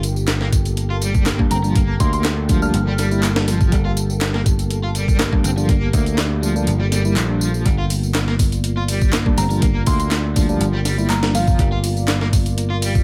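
Breakbeat in G minor at 122 BPM, this funky, swaggering excerpt rides a gritty, compressed sampler kit with a thumpy kick and high-tuned snare up front, overdriven analog drum-machine claps, hi-hat and tambourine, a growly picked bass, a crunchy guitar riff with tube saturation, tremolo and tape echo, and a dark, detuned pad pumping in the background, while mellow tine electric piano stabs enter at 1.4 seconds, a soft FM bell melody with old-record grit drifts in and out, and the kick drops out from 6.7 to 7.7 seconds in a dry mix.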